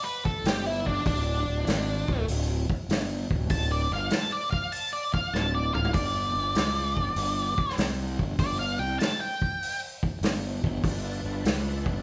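A dark, octave-fuzz lead guitar solos up front through this driving, raunchy blues rock and southern rock excerpt at 98 BPM with a swung 4/4 feel, moving from a chordless opening onto a G7 at 5.9 s just after a drum fill at 5.3 s. A growly, fuzzed fingered bass and a punchy vintage kit with a medium-tuned snare and rolled-off top drive the band, which plays live together in a large studio room with moderate reverb. At 10.8 s a thick, gritty overdriven tonewheel organ slips in quietly with sustained chords through a slow rotary speaker and chorus vibrato.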